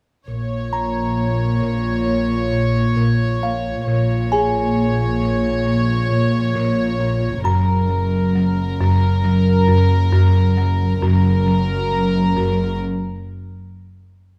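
Cinematic suspense film score with a tense, mysterious mood, where a floating, distant violin section carries the melody over a woody, buzzing marimba riff, a dark, intimate cello section and a pure, sul tasto double bass section. A delicate, tinkling music box plays from 0.7 to 10.1 seconds, and the chords move from Bb minor to Gb at 7.4 seconds before the parts drop out into a brief break at 12.8 seconds in a close, detailed recording with light reverb.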